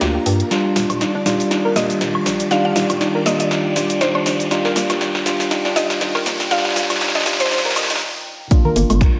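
Deep house at 120 BPM in Eb major with a soulful, warm mood, this build-up has a woody mallet-like synth pluck melody, mellow tine electric piano stabs and a soft round pluck arpeggio floating over a moody ambient pad with a sweeping filter, very quiet shimmering string machine violins, a hollow bouncy FM bass and a punchy analog drum machine with cabasa, finger snaps, hi-hat, snare and woodblock, alongside a riser in the background. A stop at 8.0 seconds then gives way to a layered, up-front electronic kick at 8.5 seconds, followed just after by soft-handed congas in the background.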